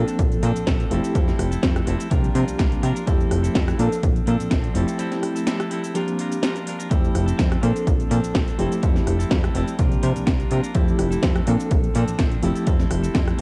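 A reedy, lightly overdriven electric piano carries this joyful, feel-good excerpt of filtered disco house, its fast tremolo, phaser and 12-bit sampler grit pumping against the beat as it cycles through Bbmaj9, Fmaj9 and C9sus4 chords in F major at 125 BPM with a gentle swing. A bright, twangy clean electric guitar riff sits low in the mix beneath it, while a plucky, funky analog bass with a fast attack and transformer saturation drives the groove. A punchy electronic kick, re-recorded in a small room, anchors a tape-soaked house kit of cracking snare, metallic hats, rim click and shaker, with a break from 5.0 to 6.9 seconds and a cassette home-recording ambience over the whole.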